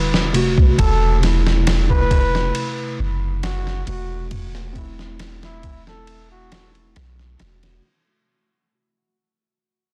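Over a straight, unhurried groove from a gritty, sampler-style drum kit with a thumpy kick, fat snare and ride cymbal, this melancholic, hypnotic trip hop fragment pairs a deep, round 808-style bass with a clean tine electric piano shimmering through tremolo, while a veiled, bucket-muted trumpet with scooped notes and tape echo sings a mellow solo from 0.8 to 6.7 seconds, all within a dry, densely limited mix that fades out throughout.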